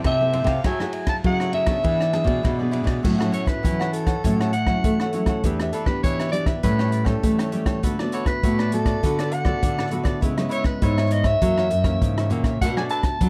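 A bright, crisply picked cavaquinho, a deep, fingerpicked classical nylon-string guitar and a full-bodied nylon-string bass with audible finger squeak open this sunny, festive samba and choro excerpt alongside an up-front acoustic jazz kit whose boomy kick, hi-hat, ride, crash and rim clicks fill the studio room. Almost at once a growling soprano saxophone takes the solo melody, raspy and gritty with vibrato and scooped notes, sitting distant in plate reverb and tape echo. The harmony moves through jazzy seventh and sixth chords, shifting into a new section at 3.0 s, in a dark, warm production.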